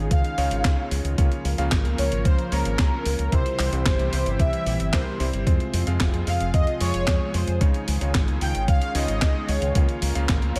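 Nostalgic and danceable, this short italo disco excerpt moves at 112 BPM in a straight 4/4, set in F minor. A bold, brassy analog synth lead carries the melody between Ab4 and G5, its fat, nasal sawtooth tone colored with chorus, delay and vibrato. Beneath it, a lush, detuned unison pad holds thick, warbling chords in the background, while a clear electric grand piano with a clangy low end and long sustain plays stabs through a delay. A dark, round fingered electric bass with an envelope filter and tube saturation anchors the low end from F1 to F2, punchy and direct. The drums arrive at 0.1 seconds: a thumpy, tape-tinged electronic kick sits prominently in the mix, joined by a clean 12-bit drum machine supplying handclaps, hi-hat and a medium-tuned snare with gated reverb. The harmony cycles through Dbadd9, Bbm, C and Fm in a dry, close-sounding mix.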